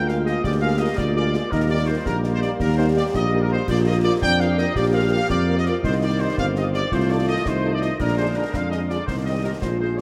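A 6/8 at 111 dotted-quarter beats per minute, with a straight feel, drives this rousing, festive military-style march for wind band, tuned to A4 = 442 Hz and cut from a longer piece. A clear trumpet section carries the melody with light vibrato, set back in the room, while a warm solo euphonium sings a second line beneath it with a soft attack. A tight, dark trombone section holds sustained chords in the background. The solo tuba anchors the bass up front, its smooth top and gentle vibrato giving the low end weight. A very quiet, mellow French horn section adds accompaniment, and concert snare, bass drum and clash cymbals fill out the percussion with an acoustic, small-room sound; both come in at 0.1 s. The brass sits in a vast, echoing cathedral reverb as the harmony moves from Bb7/D through Eb, Bb and Cm to F7/C and Bb7 before landing on Cm at 9.1 s.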